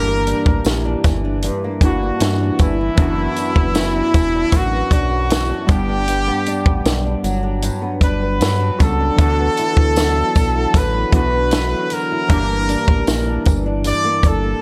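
Light reverb and a small-room ambience give this short indie and bedroom pop clip a sunny, dreamy feel in a straight 4/4. A close-miked, punchy trumpet carries the melody up front, its light vibrato softened by lush chorus and a slapback echo. Underneath, a fingerpicked flamenco guitar with subtle chorus and a vibrato effect shares the accompaniment with detuned, wave-folded analog keys, whose square, sawtooth and triangle tones decay through a filter sweep, chorus and a cassette-tape haze. A round, deep analog bass with a fast attack and sustained dark tone anchors the harmony as it moves through Gm6, D69, Gmaj7, D69 and back to Gm6. From 0.3 seconds, a dry, natural cocktail drum kit sits up front with a punchy kick, high-tuned snare and hi-hat, while a jingly tambourine stays close yet tucked in the background.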